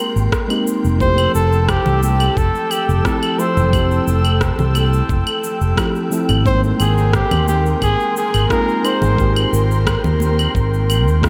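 A mellow fretless electric bass sits up front in this blissful, smooth sunset chillout piece, its dark, round, punchy tone shimmering with lush chorus at an easy 88 BPM in F major. A warm flugelhorn with vibrato carries the melody from 1.0 to 9.5 seconds, close-miked in a jazz style and trailed by delay. Beneath it, a soft, warbling FM electric piano with a vintage, full-bodied sound plays the accompaniment through chorus and delay, while an airy, breathy pad holds sustained chords with slow attack and long release. The drums pair a gritty, thumpy, compressed electronic kick with layered electronic cabasa, rim click and claves given an overdriven edge, and very quiet, bright congas played with hard hands join at 1.9 seconds. The harmony drifts from Abmaj9 to Fmaj9 and back, and a moderate cathedral reverb soaks the whole mix in a dreamy haze across this short excerpt cut from a longer piece.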